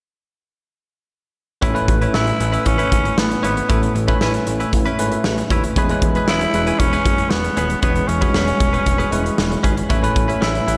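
A big arena sound with lush hall reverb frames this nostalgic, glossy 1980s-style pop excerpt at 116 BPM in A major, where a punchy, roomy rock drum kit, a retro chorused synth bass, a bell-like tine electric piano and a twangy, direct-recorded clean guitar riff with slapback echo and digital delay all enter at 1.6 seconds, joined at 2.1 seconds by an up-front, raspy, growling tenor saxophone melody over chords moving from Aadd9 to E6 and back.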